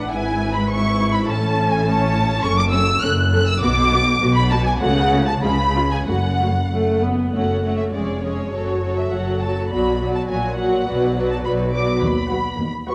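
A focused, vibrato-rich chamber violin section carries the melody in this spirited, cheerful excerpt of a quick classical-period movement for string orchestra in F# minor, taken at 102 BPM in 2/4 with a rubato feel. A lush symphonic violin section adds a second line, while a distant viola section supplies accompaniment and an up-front double bass section joins an expressive cello section on the bass, all bowed ensembles. The strings sit in a moderate scoring-stage reverb, colored by the worn, warbly pitch drift of old cassette tape, and the harmony moves through F# minor, B minor and C#7 on the way to a closing B/D# at 12.0 seconds.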